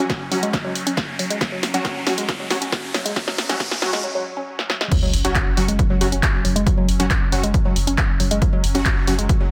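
Hypnotic and dark, this driving peak-time techno excerpt builds over a dry, punchy electronic kick, an up-front analog drum machine with snare, handclaps, pumping hi-hats and crash, a woody wave-folded pluck riff with dub echo, bright aggressive rave stabs with tape echo, a swarming background drone and a riser that gives way to a break at 4.0 seconds before the drop lands at 4.9 seconds and a thick, saturated sub bass enters at 5.1 seconds, all inside a dense, heavily limited master.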